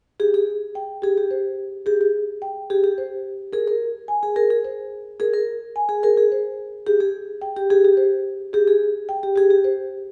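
A soft-mallet marimba carries the melody from 0.2 seconds, woody, round and airy, beside a metallic, ringing vibraphone whose medium-mallet arpeggios shimmer with motor vibrato, both parts sitting up front. This hypnotic, urgent minimalist classical pattern music moves at 108 BPM in 3/4 with a straight feel. The harmony circles around Ab, moving to Absus2 at 3.5 seconds before returning to Abmaj7(no3)/G at 6.9 seconds, with light reverb and a softened top end, in a short section cut from a longer piece.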